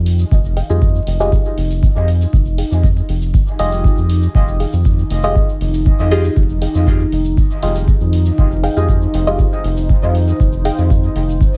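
A straight 4/4 pulse drives this dub techno excerpt, anchored by an up-front electronic kick with a deep, roomy weight and an analog hi-hat ticking above it, while a grainy egg shaker adds a live, acoustic texture. Underneath, a round analog bass holds the low end with a sustained, evolving tone and a sidechain pump, setting a cavernous, nocturnal mood. A soft, nasal chord stab with chorus, phaser and dub echo colors the harmony from the start and stops at 9.4 seconds, while a muted, detuned dub stab plays a filtered, plucky riff from 0.6 seconds, also pumping and trailing echoes. Behind them, a moody ambient pad with a slow attack and long release sustains a single dark minor ninth chord, breathing with sidechain pumping and its own reverb. The mix is dry apart from those effects, with vinyl crackle and a dulled top end giving the whole passage a hazy, submerged feel.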